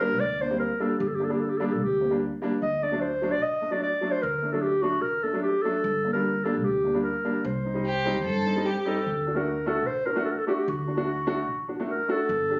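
Klezmer at 149 BPM in a straight 4/4, bittersweet and soulful, moving through G minor, D and C minor in this short cut from a longer piece. A mellow, smooth-topped clarinet carries the melody up front in a classical style, over a clear, woody vintage upright piano with long sustain and a plucked upright bass with steel strings, while a rich, vibrato-laden bowed violin adds a brief second line from 7.9 to 9.1 seconds. The sound has the roomy feel of a phone recording in a club, with moderate reverb and compression.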